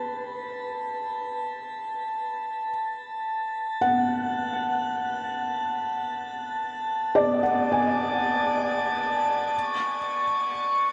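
A felt-muted upright piano and a glass harmonica fade in together from the start of this peaceful, free-time ambient fragment in D lydian. The piano plays soft, intimate arpeggios through tape echo, and the harmonica sustains a glassy, ethereal texture with a slow attack and a band-limited, vintage tone. Both sit up front in a dark, warm mix bathed in a wet shimmer reverb with an 8.3-second tail, with the harmony resting on D before moving to C#5 at 9.5 seconds.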